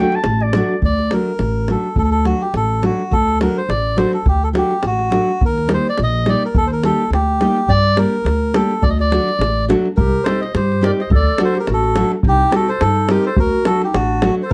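A reedy, nasal melodica carries the tune in this bittersweet, virtuosic Balkan wedding-band piece, sitting up front from 0.8 seconds onward. The excerpt moves at 105 BPM in 2/4 with a light sixteenth-note swing, set in D Phrygian dominant, with the harmony shifting among D, E-flat, G minor and C minor. A bright, fingerpicked nylon-string guitar supplies classical accompaniment, while a woody, growly upright bass plays pizzicato underneath and a deep, dry davul keeps the beat close at hand. A warm, classical-style clarinet sounds briefly at the very start, then returns as a second line at 10.0 seconds, when the piece moves into a new section. The production is dark and warm, with light reverb.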